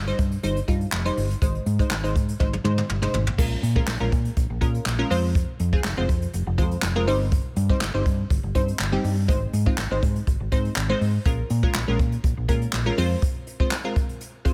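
Energetic yet bittersweet, this dance-pop excerpt moves at 122 BPM in a straight 4/4 and sits in Bb dorian, cut from a longer piece. A hollow-body short-scale fingered electric bass carries the low end from the start, its amped tone dark and round, up front and pumping with sidechain compression until it stops at 13.1 seconds. A crisp, warbling wavetable chord stab supplies the accompaniment with a vintage, detuned unison character, a filter pluck, a moving notch, fast attack and short decay, also pumping with sidechain compression. A jazz brush drum kit recorded in a small room plays acoustic brushes on a medium-tuned snare, a boomy kick, hi-hat, toms, handclaps and crash cymbal, with a drum fill from 2.4 to 3.4 seconds leading into the next section. The harmony cycles through Cm/G, Ab, Bbm7 and Fm, and studio reverb places the up-front parts in a shared space.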